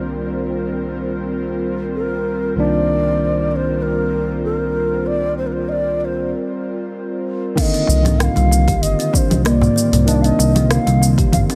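A lightly reverberant, hypnotic and earthy organic downtempo excerpt in C minor at 96 BPM, it opens on a Cm7 with a bright, clean tine electric piano pumping under sidechain and digital delay beside an airy, breathy pad that warbles with vintage detuned chorus. A reedy low ney, end-blown with vibrato and rolled-off highs, carries the melody from 2.0 seconds, and after a break at 6.3 seconds the groove arrives at 7.6 seconds. An overdriven, deep electronic kick, an afro-pop kit of congas, rim click, shaker, crash and hi-hats, and a hollow, woody kalimba ringing out arpeggios join in, followed moments later at 7.9 seconds by a close, dry clay darbuka in the background and a smooth, dark synth bass sitting up front with sidechain pumping.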